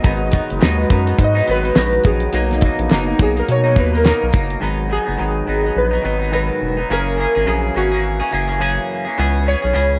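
Indie bedroom pop with a dreamy, hazy mood, this cut from a longer piece is carried by warbly, detuned lo-fi synth keys with subtle chorus and tape echo. The keys take the lead over a clean, compressed semi-hollow electric guitar bathed in lush chorus and vibrato and a round, deep analog bass, while a flute-like, nasal soft pad and a damped, dry 70s drum kit with a fat snare play until 4.6 seconds. Crisp group handclaps sit in the background from 0.6 to 4.2 seconds, and the whole piece carries a nostalgic cassette-tape haze in light reverb over swung sixteenths and chords moving from G#m7 through Bmaj7, F#9 and C#m7.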